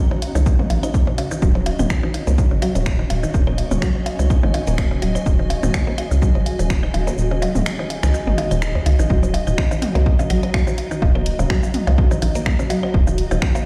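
Hypnotic and sparse, this minimal techno cut rides a swung 4/4 groove from a longer piece. A punchy, tape-warm electronic kick sits up front beside a rubbery, hollow square bass with a dark, resonant filter pluck and sidechain pumping. Around them, a house kit adds finger snaps, shaker and warm hats, while electronic blips, toms and claves scatter through dub echo. A woody, mallet-like FM pluck carries the riff with chorus, cassette tape color and its own dub echo, over a cloudy, detuned granular pad and a very quiet, flickering grainy texture that ends at 9.1 seconds. The kick drops out from 7.2 to 9.1 seconds before a drop, all played on a big sound system in a bare room with large studio reverb.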